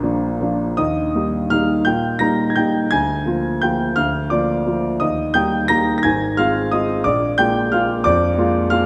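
A solo grand piano opens on a Bb chord and settles into Eb major at 0.8 s, beginning a graceful, playful classical waltz in 3/4 at 158-189 BPM with a free, rubato feel. The harmony moves through Bb7/D, Eb, Fm/Ab and Bb7 across a range from Ab1 to Bb6, and the piano's tone is warm and natural, placed up front. A moderate concert-hall reverb surrounds the playing in this short passage, cut from a longer piece, which ends at 8.9 s.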